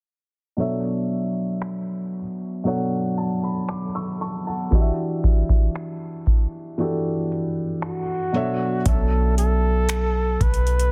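A felt-muted upright piano opens this late-night, moody slice of contemporary R&B at 58 BPM in B minor, its soft, intimate tone carrying audible action noise over Bm11 and Em7 chords while a filter sweep runs beneath, and a booming analog drum machine joins at 1.6 seconds with a deep kick, metallic hats, finger snaps and an overdriven snare. A breathy flugelhorn steps in at 7.8 seconds with a whispered, scooped solo line colored by vibrato and delay, and at 8.9 seconds a clean, sine-toned 808-style bass lands on a low B. The dry, dense and heavily limited mix keeps every part up front in this brief cut from a longer piece.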